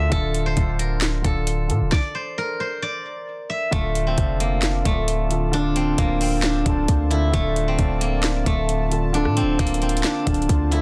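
A half-time trap groove at 133 BPM in 4/4 drives this hard-hitting, melancholic D minor hip hop excerpt: an up-front electronic kit of hard-clipped kick, sharp snare, metallic hats, handclaps and rim clicks sits over a punchy, heavy 808-style bass with a sine body, a noise layer and a decaying tail, broken by a stop from 1.9 to 3.7 s. A silvery, ringing steel-string zither carries the melody up front through a low-pass filter and delay, while a dark, worn baby grand piano with long sustain accompanies beneath it, also filtered. At 3.7 s a smooth, detuned sawtooth analog pad with a sub octave and chorus enters softly in the background, all in a dry, dense, heavily limited modern mix.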